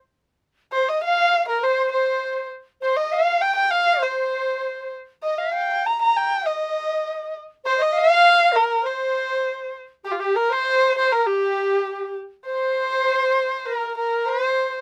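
A dark, woody erhu carries the melody up front, its single bowed voice colored by vibrato and portamento, while a large dizi adds an airy, reedy second line with a buzzing membrane, soft attack and rolled-off highs. Both enter at 0.7 seconds and play together until 14.7 seconds in this tender, graceful Chinese chamber piece, cut from a longer work, moving in a rubato 2/4 around 100 BPM in the C yu mode, with a new section arriving at 10.1 seconds. The close, detailed recording carries little reverb.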